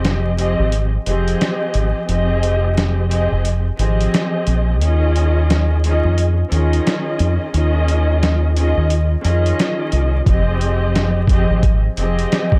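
Dry and dark, with vinyl crackle over the whole mix, this boom-bap hip-hop excerpt cut from a longer piece has a tough, shadowy mood at 88 BPM in 4/4, with a 62% swing on the sixteenths in F minor. The sampler-style drum kit sits up front, compressed and pitched down, its gritty, thumpy kick, medium-tuned snare and hi-hat carrying a tape-warm grain. A deep dub fingered electric bass, round and punchy, anchors the low end from the start and drops out at 12.2 s. Bowed studio strings with vibrato and portamento play an expressive accompaniment with a smooth top, their sound filtered and colored by cassette tape. A break runs from 0.0 to 10.3 s over chords moving from Fm9 to Eb9sus4 at 4.8 s before returning to Fm9.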